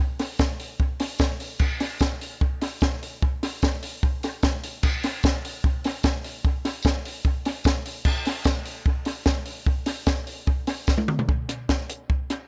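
With little reverb but plenty of echo in the mix, the drums carry an analog delay. This rock passage, cut from a longer piece, runs at 148 BPM in a straight 4/4 with a restless, bittersweet mood. A compact cocktail drum kit sits up front, sounding acoustic and dry, with a punchy kick, a high-tuned snare, dark cymbals and crash, plus hi-hat and toms. A jingly, acoustic tambourine with a live-room quality stays in the background. A drum fill at 10.9 s leads into a brief closing section at 11.3 s, where the kit plays alone until it stops at 12.4 s.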